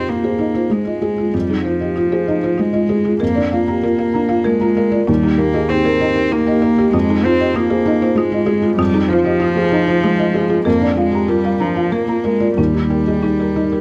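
A felt-muted upright piano, dark and intimate with audible action noise, carries the accompaniment in this melancholic, longing neoclassical excerpt in a rubato 3/4, while a close, airy sul tasto cello with light vibrato sings a second line and a woody folk marimba spins arpeggios through tape echo, all captured in a dry, close 1970s-style studio sound.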